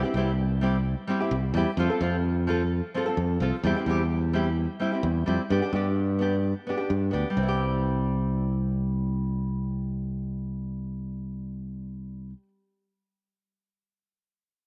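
Highlife guitar band excerpt at a sunny, joyful 129 BPM in C major, where an up-front fingerpicked nylon-string guitar with a classical touch and audible finger squeak moves through C, F, C/E and G above a bright, direct fingered electric bass, both playing from the start and sitting in a moderate echo-chamber reverb.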